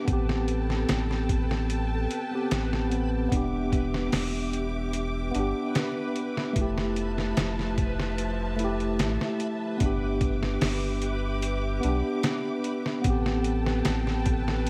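Dark and brooding, this trip hop excerpt moves in a straight 4/4 over a looping progression of Am7, Em7, Fmaj7 and Em7/G. A gritty, pitched-down sampler-style drum kit sits up front from 0.1 seconds, its thumpy kick, medium-tuned snare and hi-hat carrying a compressed, tape-warm character. Beneath it, a soft dub sub bass with a deep, round tone, touched by tube saturation, anchors the low end. A mellow tine electric piano plays the accompaniment through tremolo and tape echo, sounding clean as if heard through built-in speakers. Behind these, a lush studio string section holds smooth, bowed chords with vibrato from a distant position, while a reversed, detuned texture with a granular, dreamy quality breathes quietly in the background on a single note. Light reverb, digital ambience and a layer of vinyl crackle give the whole recording a dusty, late-night atmosphere.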